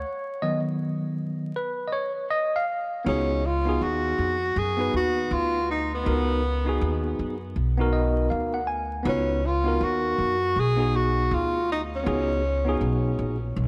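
A clean tine electric piano opens this relaxed, smooth jazz-hop excerpt alone, sounding a Db9sus4 chord through its built-in speakers and sitting up front in a dreamy mix of vinyl crackle and plate reverb. At 3.1 seconds a breathy tenor saxophone takes the melody, mellow and roomy with light vibrato, soft attacks, scooped notes and a tape echo trailing its lines. A plucked upright bass enters at the same moment, its gut strings giving a woody, thumpy, dark low end. The groove moves at 80 BPM in 4/4 with a lazy swing on the sixteenths, rooted in Db mixolydian. Around 7.6 seconds the electric piano adds a brief fill as the saxophone plays on, and the passage drifts on in its reverb-soaked haze.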